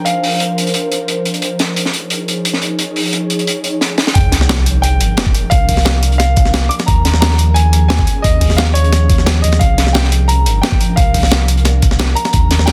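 A deep, full sub bass with an added octave sits up front in this melancholic, rolling liquid drum and bass passage at 176 BPM in a straight 4/4. It arrives with the drop at 4.2 seconds alongside a very quiet electronic sub drop. From the start, an ethereal, airy pad of detuned sawtooth and triangle unison voices holds slow-attack chords moving between C9sus4 and Eb9sus4, its ensemble chorus, built-in reverb, moving notch and sidechain pumping lending it a mellow glow. A dark, smooth, saturated breakbeat kit of hi-hat and high-tuned snare with a rolled-off top runs throughout, and at the drop a second, pitched-up sampler-style breakbeat kit and a thumpy, compressed electronic kick join with a gritty, tape-warm edge. A present, polished grand piano with short sustain carries the melody through a delay, appearing briefly at the opening before returning from 4.1 seconds. Light small-room ambience and a dense, heavily limited modern master round out this passage cut from a longer piece.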